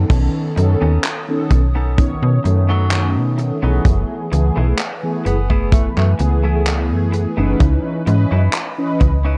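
This hazy, woozy vaporwave fragment, cut from a longer piece, drifts at a slow 64 BPM in straight 4/4, tuned slightly sharp to A4 = 443 Hz, and moves through B9, F#m11 and C#m9 chords. Up front, a punchy acoustic kick and a snappy, metallic slap-like FM bass anchor the low end. A modern studio kit adds bright crash cymbal, handclaps and hi-hat, and both drum parts carry vintage 12-bit sampler grit. Round, detuned sawtooth synth brass plays the accompaniment with a filter sweep, phaser, subtle chorus and tape echo, while a warbling, nostalgic tape-like pad of square and triangle tones sits in the background with slow attack, long release, chorus and built-in reverb. A clean, twangy electric guitar riff, picked and compressed, arrives at 0.6 s, dressed in lush chorus, tape echo and sampler grit, and between 2.7 and 6.1 s a vintage, jazz-style tenor saxophone solo with vibrato floats in the background through tape echo. 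The dark, warm production has a cassette tape character and small room reverb.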